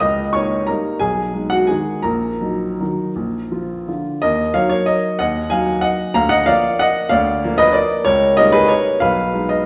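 Classical piano waltz in Eb minor, bittersweet and wistful, moving in a rubato 3/4 at roughly 158-201 BPM in this brief passage cut from a longer piece. A baby grand piano plays solo across a span from Bb1 to Eb6, its tone natural with short sustain and placed up front, while chords such as Eb7/Db, Abm/Cb and Bb carry the opening phrase before a second section begins at 4.2 seconds on Ebm. The piano sits in a large studio's wet reverb heard from further back in the room, with a softened top end that gives the whole a hazy, dusky glow.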